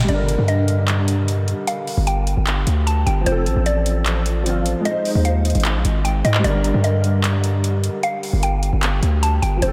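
A half-time trap groove at 151 BPM rides on a booming analog drum machine with handclaps and metallic hi-hats, while a distorted, heavy 808-style bass sits up front and pushes the menacing, brooding hip hop mood through a Gm, F, Ab, Gm progression in G minor. Over it, a woody, round mallet-like synth pluck carries the melody through chorus, phaser, low-pass filter and analog delay, and a clear, slightly worn concert grand piano with deep bass and long sustain plays accompaniment under an ensemble chorus. The dreamy mix is soaked in a cathedral reverb with a 4.7-second tail, and this 9.7-second excerpt is cut from a longer piece.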